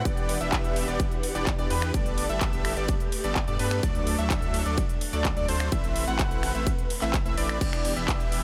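Anthemic and emotional, this short cut from a longer festival progressive house track sits squarely in a drop, moving at 127 BPM in a straight 4/4 in E minor, with chords cycling from Em7 through Gadd9, D and Amadd9 before returning to Em7 at 7.6 seconds. A huge, euphoric supersaw lead carries the riff with a bright, airy, detuned sawtooth sound and a noise layer, while a thick, bold unison lead plays arpeggios with vibrato and a mellow edge; both leads carry digital delay and sidechain pumping. Underneath, a saturated sub bass gives a deep, thick sine foundation that pumps with the sidechain. A punchy, up-front electronic kick drives the groove from 0.1 seconds, joined by a layered, tape-toned big-room dance kit with crisp hats, handclaps, finger snaps and crash and ride cymbals. Muted, con sordino studio strings hold dark, veiled sustained chords in the background until 7.6 seconds, also pumping with the sidechain, and the whole mix stays dry and close.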